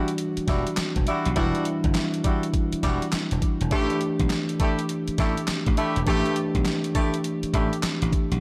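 A swung sixteenth-note groove at 102 BPM in 4/4 drives this punchy, bouncy slice of new jack swing R&B, cut from a longer piece. The boom bap sampler-style drum kit enters at 0.1 seconds and sits up front, its gritty, pitched-down, compressed sound built from a thumpy kick, a medium-tuned snare, hi-hat and handclaps, all wrapped in gated reverb. A bright, amped slap bass joins at 0.4 seconds with a punchy electric tone in the low register. A mellow, clean tine electric piano, also up front, carries the accompaniment over the harmony of Em9 moving to A7sus4 at 3.7 seconds. Behind it, a distant, roomy horn section adds jazz-style ensemble stabs treated with tape echo, while light reverb and a faint mains hum colour the whole recording.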